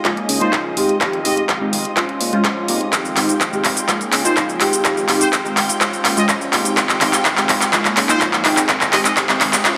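This filtered disco house cut in F minor at 125 BPM opens on an up-front, overdriven house drum kit of handclaps, hi-hat and shaker, with sidechain pumping on its hats and percussion, alongside a punchy, very quiet electronic kick and a funky, detuned polysynth comp with chorus, phaser, pumping and a low-pass filter over Db6, Fm7 and Bbm7 chords. Beneath it sit a growly fingered electric bass and a lush, very quiet string machine, while a twangy, clean guitar riff through an envelope filter, roughened by vintage 12-bit sampler grit, stays in the background. From 0.4 s a nasal muted trumpet section with light vibrato carries the melody, and the whole passage is a nostalgic, sensual build-up with a drum fill, set in wet plate reverb and bright 1980s-style digital production.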